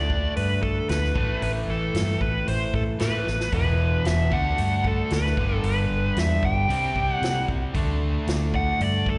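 A straight 114 BPM groove in 4/4 drives this gritty, heavy blues rock and southern rock power-trio piece, where a vintage drum kit with a punchy kick and medium-tuned snare enters at 0.1 s and breaks into a fill at 3.3 s beneath a round, foam-muted fingered bass, a bright, double-tracked crunchy guitar riff, and a dark, smooth overdriven lead guitar melody sitting up front with slapback echo, captured as a live gig through the venue's PA with recital hall reverb and a top end capped at 11.0 kHz.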